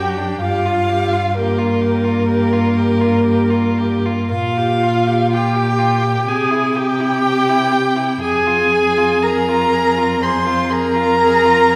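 Elegiac and solemn, this slow, rubato movement for string quartet in 4/4 has all four players bowing con sordino throughout its 11.8 seconds. The first violin's dark, veiled melody and the second violin's soft-edged inner line sit close, while the muted viola's lightly vibrato accompaniment is the loudest of the four. Below them the cello's nasal, smooth-topped bass sits up front, all set in a reverberant recital hall.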